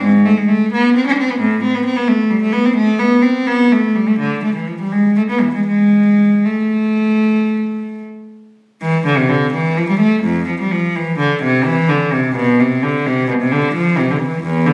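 Flowing in 12/8 with a free, rubato sense of time, this baroque-style suite movement for unaccompanied cello unfolds at a solemn, grave pace. A single bowed cello carries everything, played in period style and tuned to A4 = 435 Hz, ranging from a deep E2 up to D4. Its tone is rich and reedy, with the character of gut strings, and it sits close and up front. The first idea runs until 8.8 seconds, when a new passage takes over and continues to the end at 14.7 seconds, as this fragment is cut from a longer piece. The sound is steeped in the wet bloom of a recital hall mixed with a club-like reverb, and the performance carries the compressed, room-captured quality of a phone recording.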